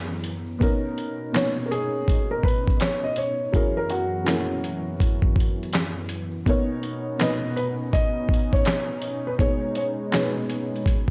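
A gritty, compressed sampler-style drum kit sits up front in this dreamy, cosy lo-fi hip hop excerpt at 82 BPM in B major, its thumpy kick, fat snare, hi-hat and handclaps swung and tape-coloured from 0.2 seconds. Beneath it, a dark, woody upright piano with audible action noise, a slightly detuned, boxy tone and short sustain plays accompaniment through cassette tape and a low-pass filter, while a smooth, detuned sawtooth pad with chorus holds soft-attack chords that move between F#7 and Bmaj9 before settling on B69. From 1.7 seconds a soft, felt-muted upright piano carries the melody through a filter and analog delay, and the whole recording sits in a light reverb with a dusty cassette sheen.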